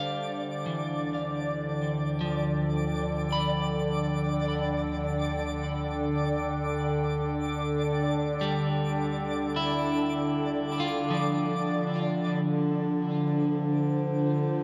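A warbling, nostalgic pad sits up front in this melancholic, serene ambient excerpt. Its detuned, lo-fi sustained chords, softened by chorus and its own reverb, hold a single Fadd9/D harmony in free time, tuned to A4 = 441 Hz. A slightly broken-up electric guitar picks arpeggios through tape echo until 13.8 seconds. Beneath them, a round, deep analog bass holds a low D and fades out by 12.4 seconds, while a reedy, breathing pedal harmonium drone on D fades in from the background over the same stretch. Above everything, a twinkling granular texture adds a sparkling octave-up shimmer. The whole recording is bathed in a cathedral reverb with a 5.6-second decay, so it feels like a vast, echoing space.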